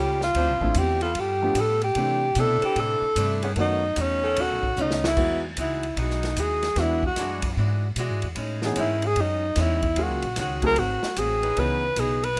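Big band swing excerpt at 150 BPM, energetic and swinging, where a breathy, whispered tenor saxophone solo with vibrato sits up front over woody pizzicato upright bass, a natural-sounding grand piano entering at 0.6 s, a boxy picked archtop guitar and a tight, clear saxophone section holding sustained, softly attacked chords in the background, and an airy, polished drum kit with punchy kick that plays a fill at 4.8 s before the music settles into E major at 5.2 s, all in light reverb.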